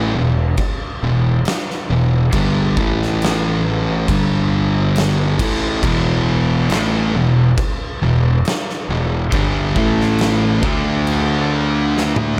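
A thick fuzz guitar and a fuzz-toned fingered electric bass open this heavy, sludgy stoner and doom metal excerpt together, the distorted guitar riff sitting up front in E minor at a crawling 69 BPM in straight 4/4. The bass sits in the background with a bright, growly, overdriven bite, while an oversized low-tuned acoustic drum kit joins at 0.6 seconds with a punchy kick, fat snare, crash cymbal and toms, its big, pumping room sound saturated and gritty. At 5.8 seconds a second dark, picked fuzz guitar enters further back in the mix, also playing a riff. The harmony moves from Em through A5 and G5, returns to Em, then shifts to A5 and D5 near the close. A drum fill at 11.9 seconds caps the passage, all of it set in a light studio reverb.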